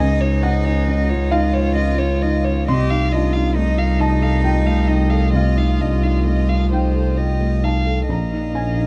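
Up front, a bowed double bass plays sul tasto with a warm, pure, floating tone, anchoring this melancholic, reflective neoclassical excerpt in a slow, rubato 6/8 at 44 BPM in dotted quarters, tuned to A4 = 436 Hz. A dark, intimate solo violin with light vibrato carries the melody over a felt-muted upright piano with a mellow, vintage sound. A clear, nasal cello traces a second line until 7.4 s, while a chamber string section holds sustained chords in the background, as the harmony moves from Dbadd9 to F7/C and settles on Bbsus4 under close, detailed microphones and light reverb.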